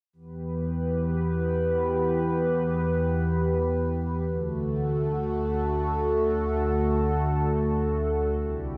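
Synthwave in free time, nocturnal and nostalgic, built from a shimmering, detuned pulse-width pad that holds up-front sustained chords from 0.3 seconds, moving from E minor to D at 4.3 seconds with slow attacks, long release and chorus, inside a lush hall reverb with bright 1980s-style digital production, cut from a longer piece.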